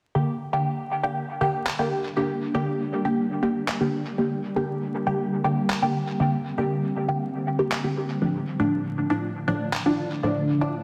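Drenched in a cavernous echo-chamber reverb and dusted with vinyl crackle under a dense, heavily limited master, this nocturnal dub techno fragment in G minor moves at 119 BPM in a straight 4/4. A muted, detuned sawtooth chord stab with a filter pluck sits up front from the start, sent through phaser and dub echo, and at 1.7 seconds a blurred, slowly evolving granular pad and muffled, pitched-down handclaps with dub echo join in underneath. The harmony holds on G minor before shifting to D minor at 8.2 seconds, and the tape-warm claps drop out at 9.8 seconds as the stab and pad carry on to the cut.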